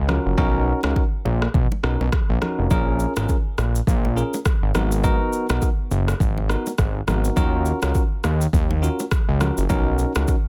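Sultry and smooth, this afrobeats excerpt with a swung sixteenth-note feel opens with a break that runs to 2.7 seconds. A fat, nasal, detuned sawtooth bass with a filter sweep sits up front beside a bright, bell-like tine electric piano moving through chords from Bmaj9 to D#m9. A layered deep house drum kit with a deep kick, rim click and shaker, plus a soft-clipped snare, drives the groove, while hard-handed congas and bongos stay in the background of a dry, dense, heavily limited mix.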